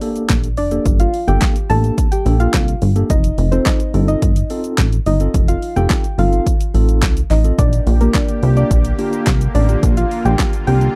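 A dry, close recording with little reverb and a 1970s studio character opens this confident, bittersweet dance-pop excerpt at 107 BPM in a straight 4/4. A deep house drum kit sits up front from the start, its punchy kick and fat snare layered with handclaps, hi-hat and shaker, while a barely audible electronic impact flickers at 0.2 seconds. A plucky analog bass enters at 0.3 seconds, funky and evolving, mixing sawtooth, square and triangle tones with ring modulation and a decaying filter pluck. A mellow tine electric piano, clean and heard through its built-in speakers, carries the accompaniment, and a soft, round, dark pluck with chorus and a sub octave takes the melody from 0.6 seconds. The bass, piano, pluck and a smooth, detuned supersaw that arrives at 7.6 seconds with sustained chords all pump with sidechain compression as the harmony moves from Gmadd9 to F7 to Bb6.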